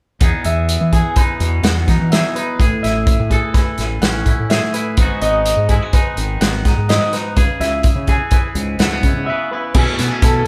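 A bright, clean electric guitar, a growling overdriven bass and a loose indie drum kit start together at 0.2 s in this wistful, intricate slice of math rock and midwest emo, set at 126 BPM in an odd 5/4 metre with a straight feel in E major. A second electric guitar joins at 0.5 s, picking high arpeggios through a small old amp that gives it a slightly broken-up tone bathed in spring reverb. The accompanying guitar's picked part carries a twangy edge, while the fingered bass sounds punchy, with both direct and amped character. The drums sit up front with a tight kick, a medium-tuned snare, hi-hat and crash, their small-room sound softened by a rolled-off top. The harmony moves through Emaj7, Amaj7, G#m7 and C#m7, and a short break at 9.3 s leads to a B9sus4 chord as the fragment closes. The whole band plays live together in one room under light reverb.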